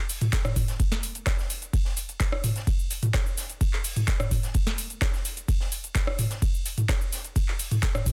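Dry, dense and heavily limited, this raw, gritty house excerpt at 128 BPM in a straight 4/4 pairs an overdriven, up-front analog drum machine, with crisp snare, metallic hats, handclaps, ride, rim clicks, shaker and toms, with a deep overdriven electronic kick that arrives at 0.3 seconds, while a high-pass-filtered acoustic jazz kit with a high-tuned snare and hi-hat sits in the background.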